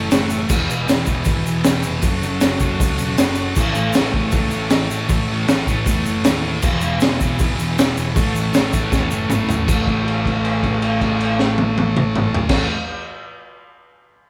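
A crunchy breakbeat drum kit sits up front in this rowdy, swaggering garage rock clip, its punchy kick, high-tuned snare and dark cymbals sounding saturated and gritty with a rolled-off top. A thick, double-tracked fuzz guitar riff and an overdriven picked bass drive the groove beneath, while a buzzy vintage combo organ with heavy vibrato holds sustained chords in the background alongside a grainy, bright tube shaker. The band plays live in one large, moderately reverberant room; an organ fill and a drum fill lead into a held note at 9.7 seconds, just before the shaker drops out at 9.9 seconds.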